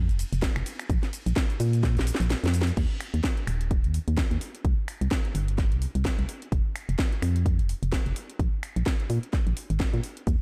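A swung 4/4 groove at 128 BPM drives this joyful, euphoric piano house clip cut from a longer piece, where a hollow, dark, organ-like FM bass with a fast attack and sidechain pumping sits up front beside a punchy electronic kick, while a layered house kit of cracking snare, metallic hi-hats, ride, crash, finger snaps and shaker adds a drum fill from 1.8 s, the kick dropping out briefly at 2.3 s before the groove returns at 2.8 s, all in a dry sound.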